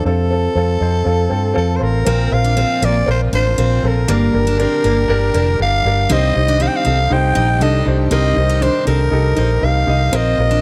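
A raspy, close-miked soprano saxophone carries the melody over baby grand piano and a round, punchy muted electric bass in this dramatic, bittersweet piano-driven pop passage at 119 BPM, where a grand piano fill runs from 0.6 s before bright picked steel-string acoustic guitar and a very quiet, lush bowed string section enter at 2.1 s as the chords move from F through Bbsus2, Gm and Cm, all in a dark production with light reverb and small room ambience.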